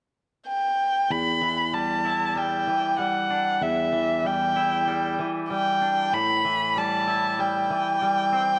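A dark, nasal bowed violin carries the brooding, melancholic melody from 0.5 s, its expressive vibrato and portamento sitting up front with a slapback echo in this rock piece in E minor at 96 BPM. At 1.1 s a clean, twangy, compressed electric guitar joins with fingered arpeggios over an Em7 chord, also touched by slapback echo, before the harmony changes at 6.1 s. A lush hall reverb and a dark, warm production wrap this short cut from a longer piece.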